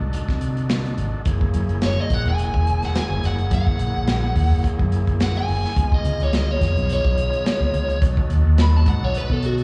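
Gritty and laid-back, this straight-eighth soul blues excerpt in F# mixolydian moves at 106 BPM with a light sixteenth-note swing, the biting, overdriven lead guitar taking a solo with slapback echo across the whole passage while the thick tonewheel organ, driven and clicking through a fast rotary speaker, supports it over chords that run from Cdim7 through F#7, C#7 and B7. Underneath, a dark, foam-muted fingered bass sits round and punchy up front, and a crunchy, saturated breakbeat kit of snare, tight kick and hi-hat enters at 0.1 s with a rolled-off top. The sound carries small-room ambience and recital hall reverb, like a live gig heard through the venue's PA.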